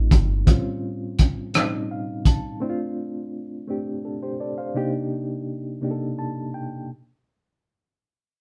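A slow, straight six-eight lilt opens this short fragment of a late-night R&B piece, its mood yearning. A cloth-damped drum kit sets the pulse with thuddy kick, hi-hat and rim clicks, sounding lo-fi, muffled, gritty and up front, with a tight kick and a rolled-off top; it drops out at 2.4 seconds. A reed electric piano carries the accompaniment throughout, its worn, slightly out-of-tune voice lightly overdriven and shimmering with fast tremolo through its built-in speakers. The piano adds fills at 1.5 and 5.8 seconds as the harmony moves from an altered A7 through Dm7 to a closing Cm9. The band plays live in one room under light reverb.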